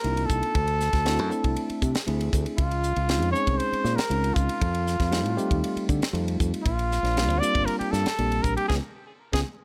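A breathy, vibrato-laced trumpet leads this slick, funky electric jazz fusion excerpt in Bb major at 118 BPM, carried over Cm9, D9, Dbmaj7, F9 and Bb69 chords by a bell-like tine electric piano, a bright, punchy fingered electric bass and a crisp, airy drum kit with a high-tuned snare, all dry, before the band hits an accent on Db5 at 8.7 seconds.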